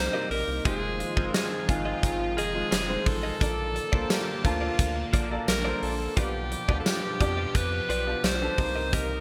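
A nostalgic, romantic slice of 1980s-style pop in Bb major opens with an edgy, up-front alto saxophone singing the melody over a clear, polished baby grand piano, a round, deep analog bass and an airy, detuned sawtooth pad, all sounding together from the first moment. The saxophone plays in a pop solo style with scooped notes and carries a digital delay, while the piano adds a touch of analog chorus. Just after, a clean, direct-recorded electric guitar joins with a compressed, picked riff tucked in the background, and at 0.3 seconds a huge arena drum kit arrives with a punchy kick, a medium-tuned snare, hi-hat and tambourine ringing in a big, natural room. The steady 87 BPM groove moves through Cm7, Fm7, Bbmaj7 and G7/B before returning to Cm7, with the pad's resonant filter swell and long release shimmering behind the band. A lush hall reverb and bright digital production give the short 9.2-second fragment its glossy, sweeping character.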